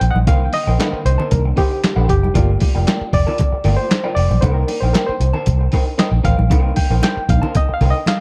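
A barky, reedy electric piano leads with fast tremolo and tape echo over a sly, funky 115 BPM groove in C dorian that moves from Cm7 to Gm7 and back. Beneath it sit a gritty, pitched-down boom bap kit with thumpy kick, snare, handclaps and hi-hat, a round, foam-muted electric bass up front, a slightly broken-up picked electric guitar in spring reverb, and thin-skinned congas entering at 0.2 s in the background, all in a dark, dry mix cut from a longer piece.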